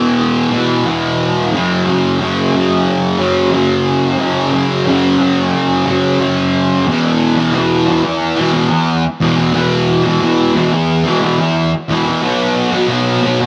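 Rock at 90 BPM in a straight 4/4, with a hazy, wistful mood, in a tuning slightly below standard pitch. A lone fuzz guitar carries the whole 13.5-second excerpt, picked and double-tracked up front with distortion and a lush chorus, moving through E5 and F#5 power chords before returning to E5 at 6.9 seconds and landing on B5 at 12.2 seconds. Light reverb gives the warm, saturated tone a little air.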